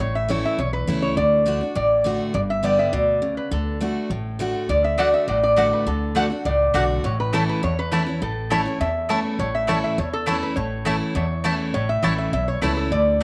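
Resonator guitar, flatpicked acoustic guitar and upright bass open this lively, virtuosic bluegrass excerpt together at a brisk 204 BPM in a straight 4/4. The lap resonator guitar carries the melody up front, played with fingerpicks and slide, its tone metallic and nasal as it sits between A4 and E5. Close beside it, the dreadnought acoustic guitar supplies bright, full-bodied picked accompaniment with audible finger squeak, while the pizzicato upright bass adds a woody low end in its G1 to E2 range. At 5.0 seconds a mandolin enters with picked stabs, its doubled strings giving a crisp, wooden ring that trails off through tape echo. The chords move from A through D and G back to D before returning to A at 7.0 seconds, all set in a moderate spring reverb that lends the acoustic ensemble a lively sense of space.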